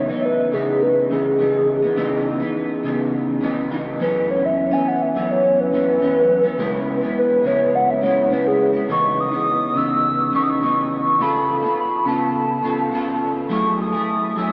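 This is a hazy, mellow indie pop piece, cut from a longer work, moving in a straight 4/4 feel. A hollow, woody synth lead with a clarinet-like voice carries the melody, softly voiced with a dark, sustained tone, a touch of chorus and a delay trail. For the first 8.9 seconds, that lead takes a gentle solo turn. Underneath and up front sits an electric guitar through a small old amp, bright and twangy with a slightly broken-up edge, colored by analog chorus and a vibrato effect. The harmony drifts through lush minor-ninth and suspended chords, shifting at 8.9 seconds into a new passage that passes through an augmented seventh before settling on a minor ninth. A huge ambient reverb soaks the whole mix, giving it a dreamy, floating atmosphere.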